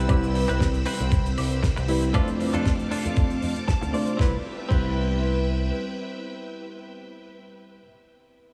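Feel-good and sunny, this short nu-disco cut at 117 BPM in C major rides a swung 16th groove of thumpy overdriven electronic kick and a damped 70s kit with fat snare, hi-hat, crash and woodblock, under a punchy envelope-filtered picked bass, a barky reed electric piano with chorus, filter sweep and sidechain pumping, a lush pumping string machine holding Cmaj7 and F6 chords, and a twangy clean guitar riff with 12-bit grit that plays a fill from 3.4 to 4.2 seconds, all soaked in a dreamy, huge reverb.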